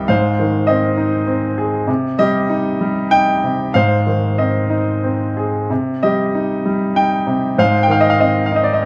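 Warm and hopeful, this lyrical classical solo piano passage moves in a flexible 3/4 at around 89-104 BPM, with rubato shaping its lines. A bright, brilliant grand piano sits up front with a natural tone, ranging from C2 to G5 as the harmony sways between Ab and Cm across the 8.9 seconds of this fragment of a longer piece. Light reverb surrounds it in a dark-hued production, where lossy compression artefacts can be heard.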